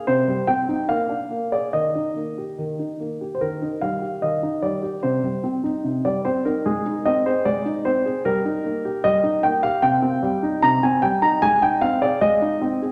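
A concert grand piano sits up front in a wet recital hall, its reverb ringing for about 1.6 seconds around a warm tone with deep bass and short sustain. This is a graceful, cheerful classical-period sonatina heard as a short passage lifted from a longer piece, played solo at 74 BPM in 2/4 with a flexible rubato feel. The music sits in E-flat major, tuned slightly low to A4 = 437 Hz, before turning to C minor from 9.8 seconds. Its harmony moves through C minor, B-flat seventh and E-flat chords, later touching A-flat and E-flat over G. The piano ranges from C3 to B-flat5 across its 12.9 seconds, and the opening phrase returns at 3.4 seconds.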